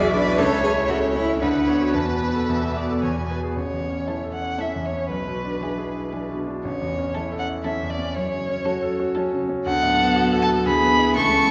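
This quick classical-period movement for piano quintet is spirited and cheerful, moving at 118 BPM in 3/4 with a rubato feel in A major. A dark, woody violin carries the melody up front with vibrato, ranging from B4 to C#6, while a smooth, even second violin and an intimate cello, played sul tasto with an airy bow and soft attack, add second lines beneath it. A brilliant concert grand piano, present and polished with deep bass and long sustain, shares the foreground as accompaniment. An expressive viola with portamento fills in the accompaniment from the background. The harmony moves from A/C# through Bm/D and Esus4 to E, and after a brief opening section a new section begins at 3.6 seconds, passing through E7/B, F#m and Bm7/D before closing on E7/D. A wet recital hall reverb of 1.5 seconds gives the fragment, cut from a longer piece, the sound of a church or concert hall.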